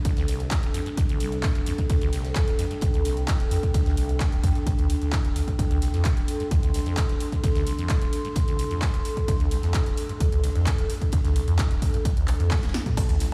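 This cut from a longer acid house track sounds as if it were played on a big sound system in a bare stone room, with a light reverb hanging over it. The trippy, hypnotic groove rests on an up-front, punchy electronic kick. A tape-toned analog drum machine adds cowbell, crash, handclaps, hi-hat, snare and toms, with a short room on its snare, clap and hats. Beneath them, a very quiet acoustic kit with ride cymbal and a medium-tuned snare sits in a natural studio room. At the center is a squelchy, resonant sawtooth acid bass riff with filter sweeps, phaser, overdrive, tape echo and sidechain pumping. Two detuned, pumping pads join it: a deep, moody, wave-folded pad holding sustained chords with chorus, and a warbling, nostalgic lo-fi pad layered as texture with its own built-in reverb. A drum fill arrives at 12.5 seconds, and a grainy, mellow tube shaker slips in at 13.0 seconds in the background.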